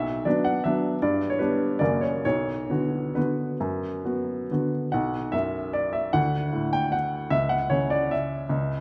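Classical piano waltz in 3/4, wistful and elegant, with a flexible rubato pulse, cut from a longer piece. A solo upright piano carries it alone, its tone bright and woody, sitting up front and intimate, with audible action noise and a short sustain. The harmony shifts into a new section at 4.9 seconds, and a moderate concert hall reverb frames the piano inside a dark, warm production.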